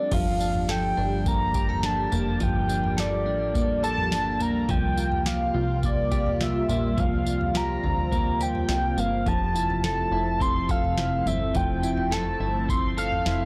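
The sound is dry and gritty, a hardware recording with little reverb. This cut from a longer dream pop piece moves at 105 BPM in a straight 4/4, with a dreamy, blissful mood. Up front, a velvety, smooth synth lead carries the melody between D5 and C6, coloured by vibrato, chorus and tape echo. Behind it, a swirling, detuned analog pad holds sustained chords in the background, its phaser and chorus lending a warbling, vintage character, while a clean, compressed electric guitar picks arpeggios with subtle chorus and tape echo. A punchy, funky analog bass with a filter pluck and transformer saturation enters at 0.1 seconds alongside a booming drum machine: its deep kick, tonal snare, toms, tambourine and crash cymbal sound tape-warm, as if re-recorded in a small room. The harmony moves from Gm9 to C7sus4 at 4.7 seconds and settles on Fmaj7 at 9.3 seconds.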